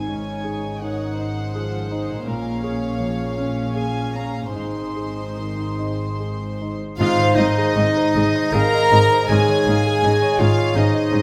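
A warm, sul tasto violin section carries a floating, tender melody over a second violin line in this hopeful, emotional cinematic film-score excerpt, moving freely in 3/4 at around 73-83 BPM through chords such as Dbsus2/Ab, Bbm7 and Ab. Grand piano, dark and woody violas, a very quiet ringing harp in arpeggios, a mellow distant horn section holding sustained chords, and soft-edged cellos and double basses on the bass fill out the texture. At 7.0 seconds a clear, distant clarinet and an airy, mellow flute join with their own lines, all set in a moderate scoring-stage reverb.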